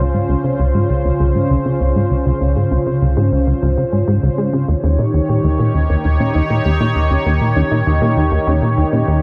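From the first moment a punchy, funky analog bass riff with a filter sweep sits up front beside a bright, resonant pad holding sustained Dbmaj7 and Eb7 chords and a very quiet, dark, round pluck tracing arpeggios, all suspended in a huge ambient reverb in this cosmic, luminous space-music excerpt at 99 BPM in Db lydian.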